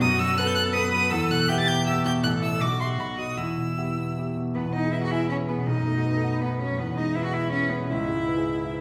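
Restless and stormy, this brief passage, cut from a longer piece, is a quick classical-period movement for piano trio in a straight triple metre. A single violin carries the melody with a rich, smooth, even tone and vibrato, spanning up into a high register. A single bowed cello sings an intense second line beneath it with light vibrato. The baby grand piano supplies accompaniment across a broad range, its dark, mellow, vintage sound sitting up front with long sustain. All three play throughout, and at 4.5 s a new section begins, with the harmony moving onto brighter ground. The trio is heard in a reverberant recital hall or church, giving the sound a wet, spacious tail.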